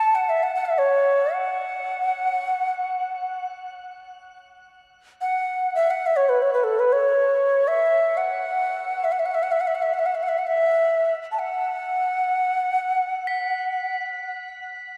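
A mellow cedar flute in the Native American style opens this haunting, free-time meditation piece of world music, joined from the start by high, bell-like crotales struck with plastic mallets. The flute carries the melody up front, its airy, wooden tone marked by vibrato, tongued notes and a chiff as it moves between A4 and A5, trailed by shimmer reverb and tape echo. The crotales add a ringing texture much lower in the mix, their own shimmer reverb lending them a glistening halo. They drop out at 5.5 seconds and return at 13.3 seconds, shortly before the flute falls silent at 14.0 seconds. A wet spring reverb and an echo-heavy mix give this passage, cut from a longer piece and tuned to A4 = 439 Hz, a deeply spacious atmosphere.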